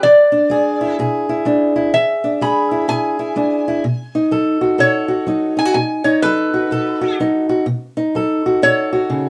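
A bright, nasal lap resonator guitar played with slide and fingerpicks carries the melody from the first second, up front beside a fingerpicked old ladder-braced acoustic guitar whose woody, boxy tone and aged strings supply the accompaniment. This swaggering, rollicking acoustic country blues duo swings at 126 BPM in 4/4, moving from E7 to B7 at 3.8 seconds. The pair sound as if playing live together in one room, with moderate studio reverb, in a brief fragment cut from a longer piece that runs to 9.3 seconds.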